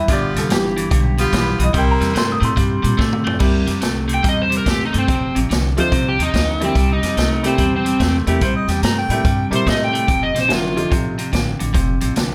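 A lightly reverberant studio room frames this laid-back, rollicking electric blues shuffle, cut from a longer piece, with a swinging big-band drum kit up front (punchy kick, medium-tuned snare), pizzicato upright bass with a woody tone, and a twangy, picked clean electric guitar riff. A slightly detuned upright piano with long sustain accompanies for most of the excerpt, a soft-attack saxophone section adds brief stabs at the opening, and a drum fill at 3.0 seconds leads into the second section. At 4.1 seconds a bright, overdriven slide guitar takes the melody, and near 8.3 seconds a warm harmonica joins with a short second line full of vibrato, tongue slaps and scooped notes.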